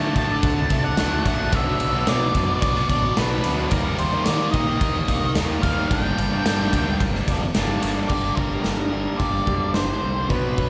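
Quiet-loud alternative rock at 110 BPM in a straight 4/4, dark and cathartic, cut from a longer piece and heard as a live gig through the venue's PA with recital hall reverb. An up-front, bright, thick fuzz guitar and a compressed distorted guitar in the background carry the riff over a growling, overdriven picked bass and a big acoustic drum kit with a punchy kick and bright cymbals, while an octave-fuzz lead guitar with slapback echo sings a dark melody and a very quiet, swirling phased string machine holds sustained chords through D, Bm, Eb and Gm until 8.1 seconds. At that point a lo-fi, slightly broken-up guitar through a small old amp enters with tremolo-soaked fingered arpeggios.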